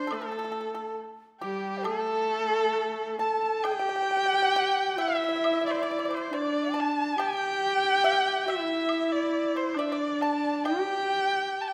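This brief passage from a longer Chinese traditional chamber piece opens with erhu, dizi, horsehead fiddle and pipa sounding together, and the woodblock enters at 0.1 s. The mood is graceful and tender, and the music moves freely in rubato at around 68 BPM in 2/4 within an A yu mode. Up front, a single bowed erhu carries the melody with a focused, clear tone, vibrato, portamento and a smooth top. Also up front, a bowed horsehead fiddle holds a lower second line that sounds husky and earthy, with a biting edge and light vibrato. Further back, a bamboo dizi adds a breathy line with the buzz of its membrane and soft attacks, while a bright, dry pipa played with fingerpicks lends a percussive color, and a very quiet woodblock sounds close and dry. The piece moves into a new section at 3.6 s, and a recital hall reverb of 1.5 s gives the ensemble a wet sense of space.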